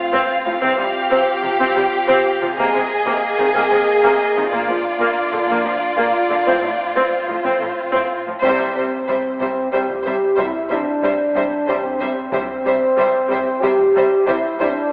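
Up front, a mellow, tight French horn section holds sustained chords through this triumphant, adventurous cinematic orchestral cue, cut from a longer piece and moving at 92 BPM in a straight 3/4 in C mixolydian. Beside it, a lush violin section with a soft attack and expressive vibrato carries a second line, while the violas supply smooth, bowed accompaniment close in the mix. Further back, a distant violin section sings the melody, a cello section and a very quiet double bass section hold down the bass, and a taiko ensemble struck with heavy sticks sits in the background from 0.6 s. The opening builds over chords such as Csus4, Abadd9/C and Bb until 8.4 s, when the full band accents a C chord and a huge, bright impact, barely audible, rings until 10.4 s. The whole cue is heard from further back in a reverberant concert hall, with a thin, telephone-like quality to the sound.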